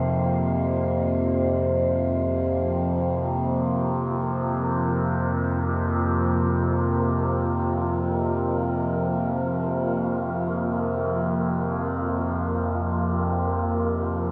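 In free time, this dark, desolate ambient drone excerpt rests on an up-front, resonant low drone whose moving overtones sweep beneath a deep, moody pad of detuned sawtooth voices with a sub octave, both softened by chorus. The pad and an airy, breathy wind-like noise texture fade in across the full 14.3 seconds. All three parts sit in a vast, echoing space drenched in huge reverb.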